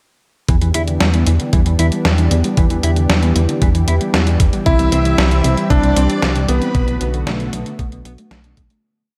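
A thumpy electronic kick and an 80s machine backbeat of closed hi-hat and medium-tuned snare, with a slapback echo on the snare and hat kit, set a straight 4/4 pulse for this cinematic, nostalgic synthwave piece. A glossy, up-front synth bass drives eighth notes with sidechain pumping. Above it sit a thick, warbling unison pad that also pumps, a very quiet, round pluck cycling a 16-step arpeggio, and a dark, clean electric guitar repeating an 8-step riff in the background through lush chorus, delay and slapback echo. At 4.7 s a clear electric grand piano with tape echo brings in a repeating riff melody, doubled an octave higher by a shimmering string-machine violin line, and both stop at 6.9 s. The harmony moves from Em7 through C to Bm7, while the whole track fades out from 6.0 s in a big arena sound with moderate scoring-stage reverb.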